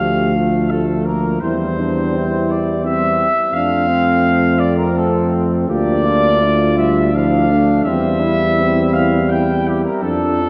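In a rubato 3/4 at 83 BPM, this tender, hymn-like classical passage for brass band, cut from a longer piece, places a mellow, vintage-toned trumpet section up front on the melody over a distant, roomy tuba bass, while a smooth-topped flugelhorn with light vibrato carries a second line and a clear euphonium and close-miked trombone fill out the accompaniment in the background, set in a wet church reverb with a dark, warm production as the harmony moves from Dm through C/E, F and Bb/D.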